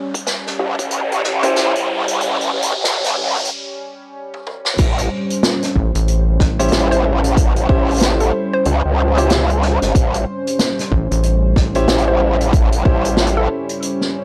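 A growling, aggressive bass wobbles up front through this gritty, funky glitch hop excerpt, its detuned tone thickened with tube saturation and chorus. Alongside it sit a punchy, layered electronic kick and a distant, roomy acoustic kit of dark cymbals, hi-hat, medium-tuned snare and toms played with bundle sticks, all riding a swung sixteenth-note feel. A smooth analog pad holds sustained chords throughout under sidechain pumping, while an electronic riser drives the opening build-up into a short break and drum fill before the drop lands at 4.8 seconds. Clear, boxy grand piano stabs carry 12-bit sampler grit and tape echo, and a rubbery, hollow square bass drops in for brief, bouncy hits. From 6.9 seconds a woody wave-folded pluck plays a mellow melody in the background, softened by chorus and tape echo, and the mix is colored by light reverb, cassette tape and transformer saturation.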